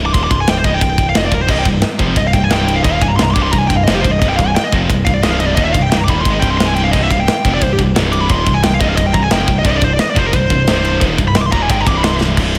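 A straight 4/4 pulse from a tight, up-front metal drum kit with bright cymbals, a tight kick and a medium-tuned snare drives this dark, heavy metal passage, cut from a longer piece, with a growling, punchy overdriven bass beneath. Two high-gain distorted rhythm guitars sit in the background, one with slapback echo from the start and a second joining at 1.5 s. Over them a dark, up-front lead guitar solos throughout with slapback and tape echo, before a drum fill at 12.2 s, all in a big arena sound with concert hall reverb.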